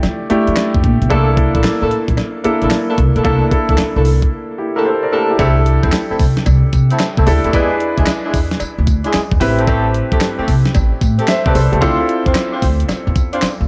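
R&B in a new jack swing vein, this bouncy, confident excerpt moves at 112 BPM with a 16th-note swing, built on a crisp 8-bit drum machine with a thumpy kick, fat snare, handclaps, hi-hat and tambourine, alongside a woody pizzicato upright bass and a clear, polished baby grand piano touched with subtle chorus, while a very quiet, dry cowbell ticks underneath. From 1.1 seconds a mellow horn section adds jazz-style stabs in octaves with light vibrato and an analog delay, over chords moving from Fmaj13 and C13 through C6, E7, Am7 and Dm7. A brief break arrives at 4.3 seconds, and the whole mix floats in a dreamy plate reverb.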